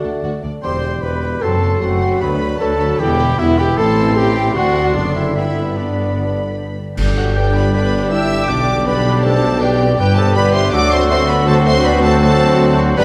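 Graceful and lively, this fast, dramatic romantic movement for symphony orchestra moves in G major at roughly 147-162 BPM, heard as a cut from a longer piece. A warm, smooth violin section carries the melody with vibrato, while a second, clear and intense violin section sits distant in the background alongside a mellow, hollow silver flute, a soft-attacked clarinet and a roomy oboe on supporting lines. A very quiet clear viola section and a dark bassoon fill the accompaniment, a mellow French horn section and a very quiet, vintage-toned trombone section hold sustained chords, a bright concert harp rings out arpeggios, and a warm trumpet adds stabs. The low end rests on a rich, lush cello section, double basses and a smooth-topped tuba. At 7.0 s the full band accents the start of a new section, punctuated by bright clash cymbals and concert bass drum that sound until 7.7 s. The whole ensemble sits in a wet recital hall reverb.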